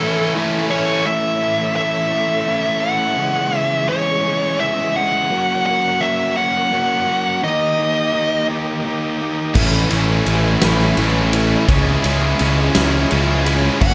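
This anthemic, bittersweet slice of quiet-loud alternative rock opens with a brief break in a swaying 6/8. A dark, bluesy lead guitar sings the melody over a reedy tonewheel organ and a thick fuzz guitar riff, with two distorted rhythm guitars, one high-gain and one tight and double-tracked, sitting back in the mix. After 1.1 seconds those two rhythm guitars drop out, leaving the up-front fuzz riff and the organ's sustained chords, with their slow rotary shimmer, chorus vibrato and key click, beneath the lead's slapback-echoed phrases as the harmony moves through A, C#m, F# and D#. The lead falls silent at 8.5 seconds. At 9.5 seconds the background guitars return, and at 9.6 seconds the band crashes back in: a growly, overdriven picked bass pushes forward, and a huge arena drum kit hits with a fat snare, punchy kick, crash and ride in a big, natural room. Light reverb frames the whole passage, which is cut from a longer piece.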